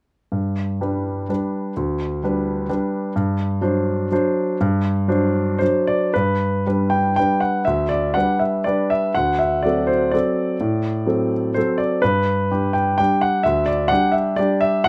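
A clear, intimate grand piano plays a playful, graceful classical waltz in G major alone from 0.3 to 14.9 seconds, its rubato 3/4 pulse moving between 104 and 136 BPM across a range from D2 to G5, sitting up front in light reverb with audible action noise, as the harmony moves from G through D7 and back to G, and a new section begins at 6.2 seconds in this excerpt from a longer piece.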